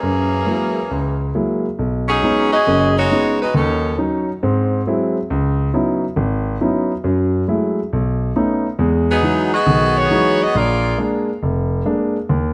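Jazz with a brassy, energetic swing feel, this excerpt is cut from a longer piece and moves through rich extended harmony. A bright saxophone section carries the melody, playing tight and up front with vibrato in a classic jazz style, heard from the opening until 4.0 seconds and returning at 9.1 seconds. A clear grand piano accompanies throughout, intimate and natural in tone, with the audible noise of its action adding a close, human presence. The chords pass through colorful voicings such as a half-diminished seventh, an augmented seventh, ninth and eleventh chords and a major ninth before arriving on a dominant seventh. Light reverb and close, detailed microphones keep both parts vivid and immediate.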